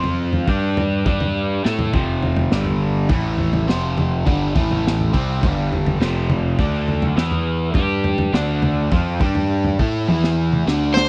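An overdriven semi-hollow guitar leads this short psychedelic rock excerpt, its bright, double-tracked riff run through a phaser and placed up front over a steady 103 BPM in a straight 4/4. A fuzz-driven picked electric bass sits just as far forward, punchy and overdriven, while a crunchy breakbeat kit of kick, snare and toms supplies a dark, gritty groove with a high-tuned snare, a tight kick and a rolled-off top. The mood is mysterious and hypnotic, the harmony cycling through power chords on G, A, F, C, D and E. Drum fills break in at 1.6 seconds and again from 10.1 seconds to the end. In the final moment, at 10.9 seconds, an overdriven slide guitar enters on a single high C, sounding louder than the rest. The sound is dry and close, in the manner of a 1970s studio recording.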